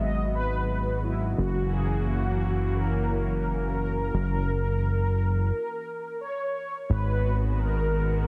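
Cinematic and nocturnal, this short synthwave excerpt at 87 BPM sets a brassy, round synth brass melody with chorus and delay over a smooth, warbling analog pad and a thick, detuned sawtooth bass that sits up front, moving from G#m7 to F#7 before a break at 5.5 seconds gives way to a new section returning to G#m7 at 6.9 seconds, all bathed in light digital reverb within a dense, heavily limited master.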